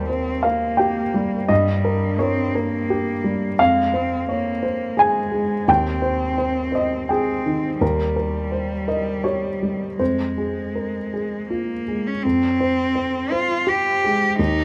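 Fragile and reflective, this short fragment of neoclassical chamber music moves in a flexible, rubato triple metre. A dark baby grand piano carries the accompaniment from start to finish, its mellow, short-sustained tone sitting up front with the clatter of its action audible in the intimate setting. A single bowed cello adds a second line across the same span, singing with vibrato, gentle attacks and sliding portamento, its rich voice touched by tape echo. The harmony drifts through minor and diminished shades before settling on an added-ninth minor chord at 12.2 seconds, where the opening material returns. The sound is dry and close, like a 1970s studio session in a small room.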